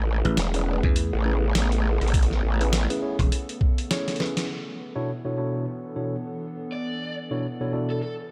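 A growling, wobbling bass with overdrive and chorus opens this playful, funky glitch hop excerpt at 102 BPM in B dorian, swung on the sixteenths, together with a detuned, nostalgic pad dressed in phaser and sidechain pumping. It is joined by a punchy, foam-muted slap bass, a gritty, pitched-down sampler-style kit and a thumpy electronic kick that sits up front until 3.7 seconds, ahead of a drum fill and band accent near 4.3 seconds. Over that pad, a mellow tine electric piano plays stabs through dub echo as the harmony moves from Amaj9 to Bm11 at 4.5 seconds, and at 6.7 seconds a dark, overdriven guitar picks a brief melody in an echo-heavy mix.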